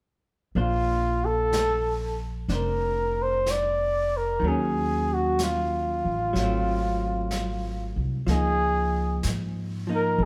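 Intimate and romantic, this slow jazz ballad excerpt at 62 BPM in Bb major with a gentle swing features a mellow, close-miked flugelhorn singing the melody with vibrato up front, a dark, clean hollow-body electric guitar comping through chords from Bbmaj9 to Db69, a woody pizzicato upright bass, and a soft brushed drum kit on snare and hi-hat, all playing live together in a large studio with moderate reverb from 0.6 to 10.3 seconds.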